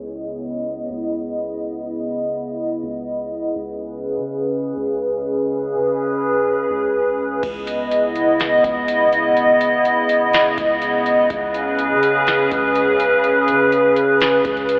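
A hollow, flute-like pad sits up front from the start, its detuned, airy chords pumping under sidechain and chorus, while a soft, round 808-style bass murmurs deep in the background and a filter sweep runs through the first 7.4 seconds. At 7.4 seconds a booming analog drum machine enters with a deep kick, crisp snare, metallic hats and crash in a half-time feel, as the harmony alternates between C#m9 and G#madd11/C#. This ethereal, melancholic cloud-rap fragment is drenched in a huge ambient reverb, its dreamy mix further muffled by a low-pass, telephone-like tone.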